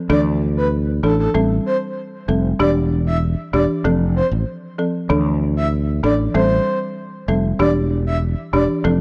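A growly, up-front fretless electric bass anchors this tough, sultry dancehall excerpt at 96 BPM in E phrygian, together with a woody, rustic folk marimba played with medium mallets and a soft, breathy flute-like synth lead that carries the melody with chorus, vibrato and tape echo until 8.6 s, all captured in a gritty small-room recording cycling through Dsus2, Am7, Em7 and F.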